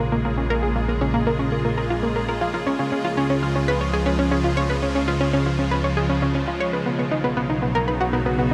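A round, bright analog pluck sits up front with a riff of fast-attack, short-decay notes, its sound treated with chorus and delay while a filter sweep runs across the arpeggio throughout this cosmic, mysterious excerpt of sequencer-driven ambient space music in a straight 4/4. Beneath it, a morphing, sine-based wavetable pad holds slow-blooming chords through ensemble chorus and its own reverb, and a fat, saturated, detuned analog bass anchors the low end. Everything floats in a huge, wet reverb as the harmony moves from Bbm7 to Db at 2.8 seconds and to Badd9 at 6.9 seconds.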